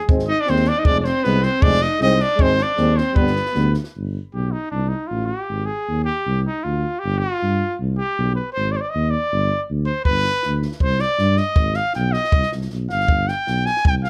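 A clear, up-front trumpet with plate reverb leads this fiery, restless Balkan brass band fragment in a swung 2/4, joined at once by a dark tuba bass, a dry cocktail kit with punchy kick and high-tuned snare, a mellow, distant French horn, a euphonium with light vibrato, and a raspy, scooped alto saxophone with slapback echo in the background, before the horn, euphonium, sax and drums drop away near 3.9 seconds for a trumpet solo over the tuba, with the drums returning at 10.1 seconds.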